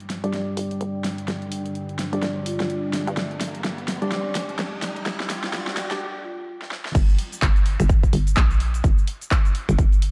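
Bass house with a swaggering, gritty mood, this fragment builds from the start as a hollow, bouncy FM bass, a moody detuned analog pad and dark percussive organ stabs (both sidechain-pumped and filter-swept), and an overdriven big-room drum kit with a huge snare, handclaps, finger snaps, shaker, hi-hat and crash play alongside a background riser and brief mellow vibraphone notes with dub echo, before a break at 6.0 s and a drop at 7.0 s, where a punchy, up-front electronic kick enters.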